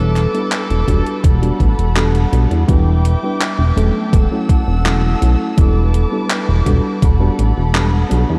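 A glossy, up-front chorused synth bass anchors this nostalgic, woozy vaporwave fragment, joined by a round FM electric piano bathed in lush chorus and tape echo, hushed sul tasto chamber strings holding sustained chords, an overdriven, gated 80s drum machine's handclaps and hi-hat, a thumpy electronic kick first heard at 0.9 seconds, and a distorted, bluesy lead guitar that sounds only in the opening 1.2 seconds through tape echo.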